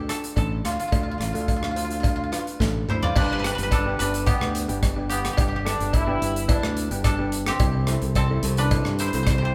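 A woody, fingerpicked koto melody with digital delay opens this bouncy, carefree calypso excerpt over a growly, bright electric bass, joined at once by shimmering cello steel pans struck with hard rubber sticks, an airy, polished studio drum kit with a punchy kick that plays a fill at 2.6 s, and a close, dry cowbell tucked in the background, while a mellow, vintage jazz-style horn section with light vibrato adds a brief second line from 5.6 s to 6.9 s as the chords move from Dm to G to C, all heard as a band playing live in one room under a moderate large-studio reverb.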